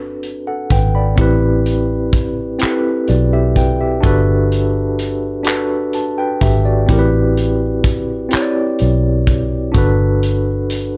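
Sensual and warm, this slow six-eight R&B excerpt in G major at 42 BPM drifts between Gmaj9 and Am9 as a clean tine electric piano with medium tremolo through a combo amp provides the accompaniment over a round, foam-muted fingered electric bass and a soul drum kit of handclaps, hi-hat and tight kick with a rolled-off top, all set up front in a dark production with light reverb.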